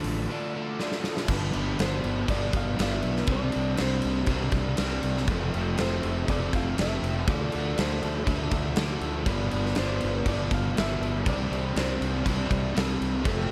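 Up front, a dark, overdriven electric guitar, double-tracked and compressed with a subtle chorus, drives a hazy, dreamy shoegaze and dream pop riff in this rock excerpt. A punchy fuzz bass and a big acoustic drum kit in a bright stone room push alongside, with a drum fill at 0.8 seconds leading into the main section at 1.3 seconds, where the chords move from G7sus4 through Csus2, F and Dm7. Further back, a clean, hollow-bodied semi-hollow guitar carries the melody through tape echo until 12.5 seconds.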